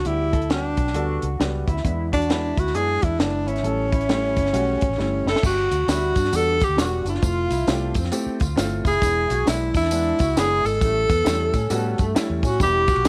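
A close-miked tenor saxophone carries the melody up front with a warm jazz vibrato over an uptempo, swung 1960s-style soul groove at 134 BPM, uplifting and joyful in mood. A dark, woody upright piano and a round, punchy foam-muted electric bass support it, while a twangy, slightly broken-up electric guitar riff with lush chorus sits in the background over a dry cocktail drum kit with a high-tuned snare, punchy kick and dark cymbals. After a drum fill at 5.0 seconds, a jingly tambourine joins at 5.4 seconds as the chords move through Gmaj7, Fmaj7, E7 and A7, all in a close, dry sound taken from a longer piece.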